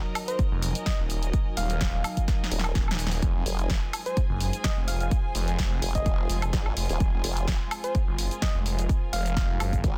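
A swirling, saturated phased saw bass and a wobbling formant-swept bass drive this swaggering, gritty bass house excerpt in F phrygian at 127 BPM with a light swing, where a punchy up-front electronic kick and a layered house kit of hi-hat, shaker, snare and woodblock (with a fill at 2.3 to 3.2 seconds) play beneath a round, gentle FM lead with chorus and tape echo, while a smooth bowed chamber string section adds texture and a deep, moody pad sits in the background as Ebm moves to Fm at 3.2 seconds in a dense, heavily limited mix.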